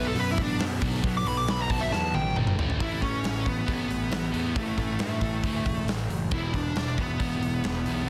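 A dark, overdriven lead guitar solos up front with slapback echo in this driving, aggressive hard rock excerpt, backed by a pair of double-tracked background rhythm guitars (one sludgy and distorted, the other a warm semi-hollow) playing a riff, a fuzzy picked bass, and a big, punchy acoustic drum kit that enters at 0.2 seconds and plays a fill from 1.9 to 2.8 seconds as the solo gives way to a new section.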